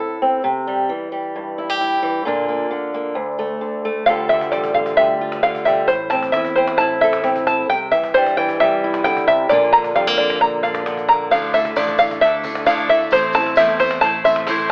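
A plunky, twangy open-back banjo takes the spotlight with arpeggios from 4.1 s in this bittersweet, yearning indie folk fragment at 133 BPM in D minor, where a warm fingerpicked acoustic guitar opens alone before a round electric bass and a snappy cajon playing a fill in the background join the building arrangement, and from 11.3 s a full-bodied picked dreadnought and a faint jingly tambourine are added, all heard through a telephone-like sound and a moderate studio reverb.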